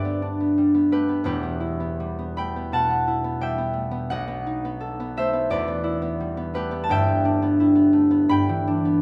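A wet recital hall reverb, about 1.7 seconds long, surrounds a concert harp heard up front, its ringing, fingerpicked strings sounding warm and acoustic. This short classical passage, cut from a longer piece, is a solo for the harp alone and feels graceful and peaceful. It moves in 4/4 with a rubato feel, drifting between 74 and 89 BPM, and is tuned to A4 = 441 Hz. The harp spans from E1 up to B5 across its nine seconds, with the harmony moving from G to Em, then B7 at 4.1 seconds, back to Em, and settling on Em7/G at 6.9 seconds.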